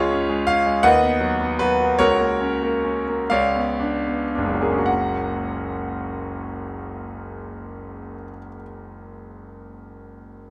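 A clear concert grand piano sits up front in a moderate stone room, its intimate, polished tone carrying deep bass, long sustain and audible action noise. This lyrical, hopeful romantic character piece for solo piano in F# major moves in a rubato 6/8 at roughly 35-55 BPM, slowing through the opening phrase as its harmony passes through a C#7b9 before settling on F# at 4.9 seconds. A second phrase then unfolds until the recording, cut from a longer piece, ends at 10.5 seconds.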